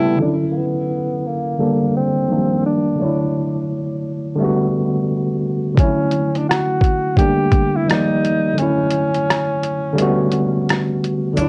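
Dull, capped-top cassette home recording in a moderate studio reverb frames this nostalgic, mellow lo-fi hip hop piece at 86 BPM in D major, where a breathy subtone tenor saxophone solo with vibrato and scooped notes drifts over a worn, slightly out-of-tune, lightly overdriven tine electric piano under a long filter sweep, a gritty, pitched-down boom bap drum kit with a thumpy kick joins at 5.8 seconds, and a woody pizzicato upright bass and a grainy tube shaker in the background sound only at 11.4 seconds as the excerpt cuts off.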